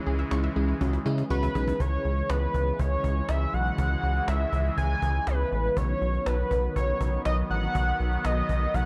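A dark, lightly reverberant mix carries this nocturnal, melancholic synth-pop excerpt, grounded by a rubbery, hollow square bass and a snappy cajon that plays a fill around 0.8 seconds. A mellow FM electric piano and a bright unison pluck with tape echo appear only briefly at the start, while an airy, evolving pad holds sustained chords throughout. From 1.3 seconds a bold, retro octave-doubled lead with vibrato carries the melody up front, and the harmony shifts to a B chord at 5.8 seconds.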